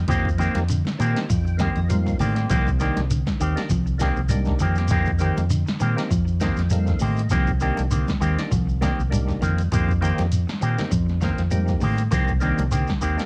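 A deep, round dub bass up front and a dark, scooped clean guitar picking arpeggios in the background open this driving, defiant afrobeat excerpt. They are joined at once by bright, twangy envelope-filtered guitar stabs, a punchy analog drum machine, grainy shekere and very quiet soft-handed congas. A fat, percussive tonewheel organ with key click, chorus vibrato and a slow rotary speaker enters at 0.4 seconds to accompany and add fills. The parts move between F9sus4 and Cm7 chords inside a home cassette recording with a faint mains hum.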